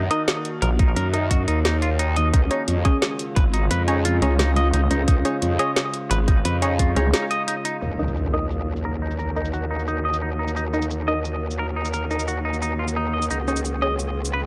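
An eerie, inharmonic FM drone, muted sawtooth dub chord stabs with chorus and delay, and a growling, saturated bass open this aggressive, futuristic drum and bass at 175 BPM in Eb minor, moving between Ebm and Db, with bright, twangy clean electric guitar arpeggios and a low-pass filtered kit of woody snare, metallic hi-hat and cabasa arriving almost at once. A tight, up-front electronic kick drives the first half from 0.8 seconds, alongside a nasal, resonant vowel-sweep wobble bass that flickers in at 0.6 seconds and returns at 3.4 seconds, before a break at 7.1 seconds. A background electronic impact lands at 7.8 seconds as filter sweeps move across the drone, guitar and stab in a dark production with light reverb.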